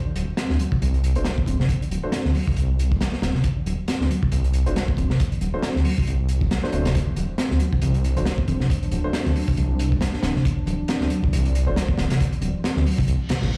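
This swaggering, funky breakbeat cut rolls along at 137 BPM in 4/4, its sixteenths pushed by a 57% swing over a D7 harmony. A soft, flute-like tonewheel organ riff sits in the background through a slow rotary speaker and tube saturation, while a thick, menacing detuned saw bass, beating and saturated, sits up front beside a crunchy, gritty breakbeat kit with a high-tuned snare, tight kick, hi-hat and rolled-off top. Dark, vintage grand piano stabs with short sustain arrive at 1.2 seconds, trailing dub echo. At 6.9 seconds a warbling, nostalgic, lo-fi pad enters with slow-attack sustained chords, chorus and sidechain pumping, and bright, very quiet congas join shortly after. A brief electronic reverse cymbal appears at 13.2 seconds, and the whole excerpt sounds as if played on a big sound system in a bare room, soaked in large studio reverb and vinyl crackle.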